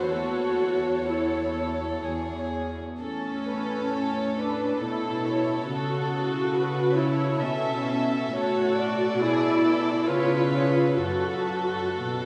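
A wet cathedral reverb surrounds this short cut from a slow, lyrical and serene romantic movement for string orchestra. It moves in a rubato 3/4 at 60-72 BPM, starting in A major and turning to F# minor at 8.4 s. A pure, floating symphonic violin section carries the melody alongside an intimate chamber violin section with light vibrato on a second line. Beneath them, a dark, woody viola section sits up front with lush accompaniment, and a rich cello section holds the bass, all bowed sul tasto throughout the 12.3 seconds.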